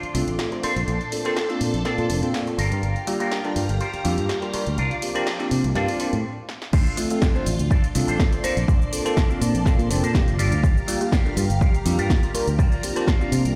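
A groovy, funky filtered disco house cut in D minor, riding a 4/4 pulse at 123 BPM with a light swing on the sixteenths, taken from a longer piece. A punchy analog drum machine plays crash, hi-hat, shaker and an overdriven snare from the start, while a warm, fingered electric bass sits up front, pumping along with a bell-like tine electric piano that carries the accompaniment with phaser. A dark, clean electric guitar played through an envelope filter works a picked riff bathed in spring reverb, and a lush vintage string machine holds soft-attack sustained chords treated with phaser and ensemble chorus. The first half builds over Dm7, Bbmaj9, Gm7 and C9sus4, then stops at 6.2 seconds, with a drum fill at 6.5 seconds before the drop lands at 6.7 seconds. There a dry, overdriven electronic kick enters up front and drives the same progression to the end. The mix carries a muffled low-pass haze on the melodic parts and a stone-room reverb, like a big sound system playing in a bare space.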